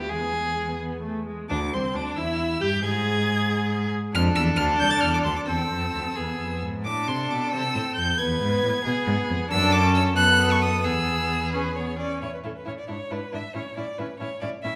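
In a rubato 6/8 lilt at 90 BPM counted in dotted quarters, this dramatic, urgent excerpt from a quick classical-period string quartet movement settles into A major from 9.5 s and closes on an A chord at 13.6 s. The first violin sings the melody up front with vibrato, expressive portamento and a rich tone, reaching A6, while the second violin holds a focused, smooth-topped second line. The viola's accompaniment comes from a distance with soft attacks and gliding slides, and the cello anchors the bass with a close, even, smooth sound, all set in the wet reverb of a recital hall.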